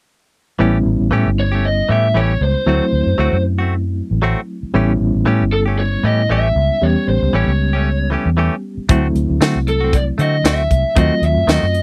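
Over a straight-eighth 4/4 groove with a light swing on the sixteenths, this swaggering, laid-back soul blues excerpt opens at 0.6 seconds with a gritty, reedy electric piano shimmering with fast tremolo, bright, twangy stabs from a clean direct-recorded guitar, and a round, foam-muted fingered bass sitting up front. At 1.4 seconds a lead guitar through a small cranked amp takes the melody with a lo-fi, overdriven, picked tone, moving over dominant-seventh changes before a diminished chord near the end. A tight funk kit with a high-tuned snare, hi-hat, kick and tambourine joins at 8.9 seconds, all captured in a dry, close 1970s-style studio sound.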